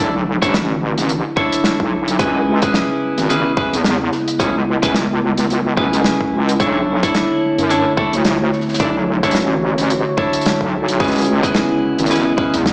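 A swung glitch hop groove at 109 BPM in 4/4, carried by a punchy, overdriven electronic kick that enters at 0.4 seconds alongside an up-front soul kit of hi-hat and a medium-tuned snare with a rolled-off top, sets a playful, swaggering mood in B dorian. A heavy, saturated wobble bass with chorus and overdrive sits up front beneath dark, picked stabs from a clean electric guitar, which carries dub echo and sidechain pumping, while a warbling, nostalgic lo-fi pad with chorus and built-in reverb sustains chords moving between Bm11 and C#m7. The short cut sounds as if played on a big sound system in a bare room, with large studio reverb and a small-speaker character.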